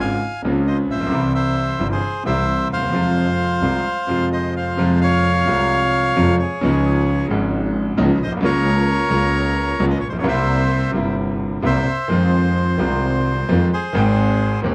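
A dramatic, passionate tango excerpt in F minor at 131 BPM, played with a rubato feel and tuned to A4 = 444 Hz, moving through chords such as Dbmaj7, C7 and Fm7. An up-front, reedy bandoneon carries the melody through plate reverb and tape echo, while a clear, vintage-sounding concert grand piano with deep bass supplies the accompaniment. A single bowed double bass adds an earthy, distant low line with light vibrato, all set in a wet club ambience, and a new section begins at 4.8 seconds.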